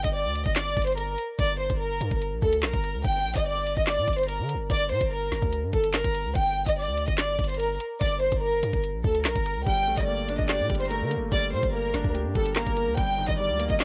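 Menacing and ominous, this half-time drill hip hop cut at 145 BPM in G minor sets an up-front, intimate chamber violin section playing the melody with light vibrato and a soft sul tasto touch over a deep, mellow 808-style bass and an overdriven, cassette-saturated drum kit of knocking kick, woody snare, bright hats and handclaps, while a grand piano with audible action noise and short sustain joins at 9.7 seconds, all inside a light reverb and a dusty home-cassette sound.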